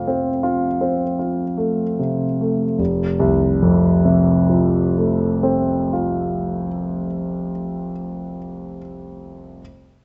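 Classical romantic nocturne for solo piano, nostalgic and serene, unfolding in a lilting 6/8 with free, breathing rubato that slows through the opening 2.8 seconds before a new passage begins. The concert grand is warm and up front, its deep bass reaching down to F1 and its range climbing to F5, set in a moderate recital-hall reverb with a softened, rounded top end. This brief fragment of a longer piece ends at 9.6 seconds.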